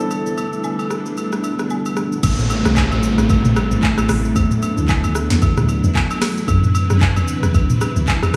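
A swung, electronic afro-pop drum kit sits up front, with a deep kick, sharp snare and smooth hats, joined by close, acoustic agogo bells and woodblock in this late-night, hypnotic amapiano excerpt. A polished baby grand piano melody with diffuse ambient delay and glassy, detuned digital keys with chorus open briefly over full-bodied, vintage string machine cellos that pump under sidechain. At the drop at 2.2 seconds, a round, dark log drum bass and an electronic downlifter enter, all within a dreamy mix soaked in lush hall reverb.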